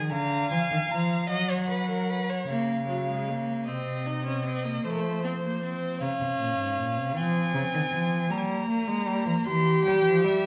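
A close, warm-toned violin carries the melody over a smooth-topped cello bass and a distant second violin in this solemn, driving fragment of a baroque-style string quartet fugue in 6/8, where the second violin stops at 2.5 seconds as a rich, focused viola takes up the accompaniment, all four bowed solo players singing with vibrato (the violins and cello also sliding with portamento) inside a reverberant recital hall.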